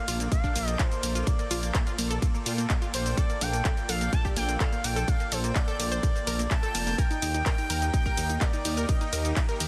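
Densely limited and lightly reverberant, this hopeful, uplifting progressive house excerpt in Bb major at 126 BPM rides on a punchy, up-front electronic kick and a house kit of handclaps, bright hi-hats, ride cymbal and shaker, under a rumbling, saturated detuned saw bass, while a smooth portamento lead sings with vibrato, chorus and delay over a thick, phased background pad, a gritty 12-bit sampled pluck arpeggio, and a very quiet reversed granular texture that swells in from 0.5 seconds, as the harmony moves from Bbmaj7 to Eb at 7.0 seconds.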